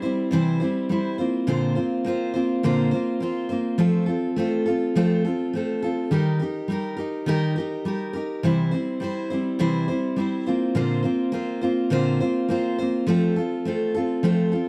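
A picked steel-string acoustic guitar plays alone in this hopeful, open-road rock excerpt at 104 BPM in a straight 4/4, its full-bodied dreadnought tone sitting up front with audible finger squeak and light studio reverb in a dry, close 1970s-style recording, moving through C, Bbadd9, F and Eb over 14.7 seconds, tuned slightly below standard pitch to A4 = 438 Hz.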